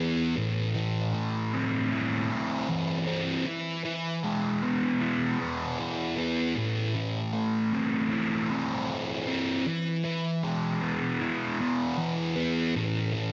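In a straight 4/4 at 78 BPM, this dark, mysterious rock fragment features a lone thick fuzz guitar, picked and double-tracked up front, its distortion colored by phaser and set in a moderate echo-chamber reverb with a dull, rolled-off top as it moves between Am and E before landing on A5 at 12.7 seconds.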